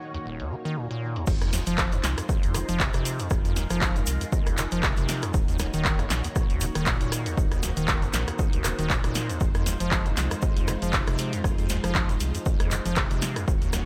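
A lush string machine opens this hypnotic, driving acid house excerpt, holding sustained Ebm7 chords with ensemble chorus, a gritty vintage sampler edge and sidechain pumping. It is joined almost at once by a squelchy, hollow square-wave acid bass riff with resonant filter sweeps, tube saturation and tape echo. A punchy analog drum machine, up front and re-recorded in a large room, enters alongside it with snare, hi-hat, rim click, handclaps and crash cymbal, its tape-warm tones softened by low-pass filtering. At 1.3 seconds the drop arrives with an up-front electronic kick, while a round, deep analog bass with sidechain pumping and a close, grainy, bright tube shaker sit in the background. The harmony shifts between Fm7 and Ebm7 over a swung sixteenth-note feel in 4/4, and the overall sound carries little reverb.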